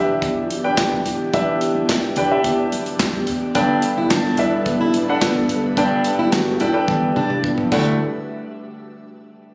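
A polished, up-front baby grand piano, a soft, breathy pad with chorus and phaser in the background, and a woody pizzicato upright bass open this uplifting, warm piano-driven pop excerpt together at 108 BPM over Em7, while a studio drum kit with bright cymbals, punchy kick, handclaps and toms enters at 0.2 seconds. At 3.6 seconds, as the harmony moves to Gadd9, a dark, full-bodied fingerpicked steel-string acoustic guitar adds a riff with audible finger squeak, and a drum fill from 6.9 seconds leads toward Dadd9. The whole mix sits in a lush hall reverb with small-room ambience and the slightly roomy character of a phone recording.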